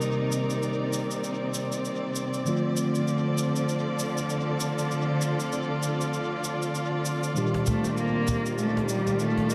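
Organic downtempo at 98 BPM in 4/4, this short excerpt carries a mystical, earthy mood with a gentle 16th-note swing. A rich, smooth studio string section holds sustained bowed chords up front through Cm7, Dm7 and Ebmaj7, while a bright, clean tine electric piano plays accompaniment through a low-pass filter sweep and analog delay. A mellow, shimmering hammered santur rings with barely audible arpeggios until 1.0 seconds, and a tape-hued electronic shaker, re-recorded in a large room, ticks along under analog delay. A snappy, close acoustic cajon with snares enters at 7.5 seconds, and at 7.7 seconds a distant yet up-front solo cello takes the melody with expressive vibrato and portamento, trailed by dub echo. A wet spring reverb and an echo-heavy mix give the whole excerpt a deep, dreamy space.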